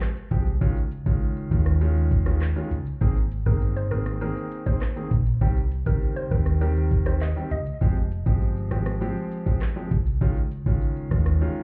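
A straight 4/4 dancehall groove at 100 BPM, bouncy and sunny, rides on an up-front electronic drum kit of knocking kick, metallic hi-hat, handclaps, rim click and shaker, joined at 0.3 seconds by a dark, round hollow-body picked bass and a clear, polished grand piano moving through Fmadd9, Dbadd9, Abadd9 and Cm, while a woody, mallet-like FM synth pluck with chorus and tape echo carries a brief melody from 3.5 to 7.6 seconds before the drums and bass break off at 11.4 seconds, the whole mix sounding muffled as if heard through a wall, with club reverb, in this cut from a longer piece.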